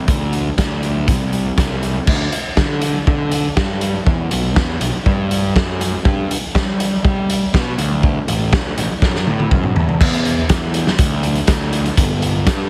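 Jangly and wistful, this short indie rock excerpt moves at 121 BPM in a straight 4/4, with a fuzz-laden picked electric bass and a raw garage drum kit playing together from start to finish. The overdriven bass sounds round and punchy, ranging from G1 to G3, while the up-front drums are gritty and saturated with a dark, rolled-off top, a punchy kick and a medium-tuned snare across crash, hi-hat and toms. A drum fill from 9.0 to 10.0 seconds leads into the closing section, and the whole mix has a dry, heavily compressed radio sound.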